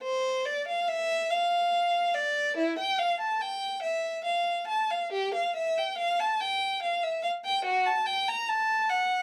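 Introspective and solemn, this brief fragment from a longer piece is a baroque-style suite movement for unaccompanied violin, cast in triple metre with a free, rubato feel. A single bowed violin carries the whole passage from 0.0 to 9.2 s, moving between E4 and Bb5. Its tone is rich and focused, colored by vibrato, and though it sits up front in the mix, it carries a faintly distant quality. A moderate studio reverb lends the room a modest sense of space around the solo line. The instrument is tuned slightly below standard pitch, with A4 at 438 Hz.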